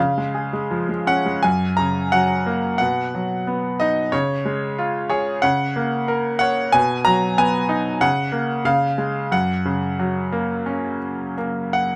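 Hopeful and sunny, this short excerpt from a longer classical piece features a bright grand piano playing alone in F# major at around 91 BPM, with a lyrical, rubato feel and uneven beats. The brilliant, up-front tone carries long sustain, and the close, intimate recording lets the instrument's action noise come through in a dry room. After a brief opening, the music settles at 1.4 seconds into a flowing passage that moves through B and C# before coming home to F# at 9.3 seconds.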